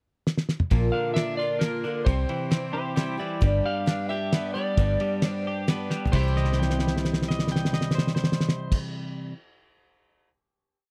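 A dry, close 1970s-style studio sound with light reverb frames this short, nostalgic folk rock and heartland rock piece in 3/4. A cloth-damped, thuddy drum kit with a fat snare and dark cymbals sits up front, a round, foam-muted fingered bass plays a dotted figure, and a woody, shimmering twelve-string acoustic guitar strums open chords. A bright, twangy twelve-string electric guitar picks arpeggios, a slightly broken-up slide guitar carries the motif-based melody, and a clean pedal steel guitar adds blues licks at 2.7 seconds and again from 6.4 seconds, after the band arrives on a final chord at 6.1 seconds.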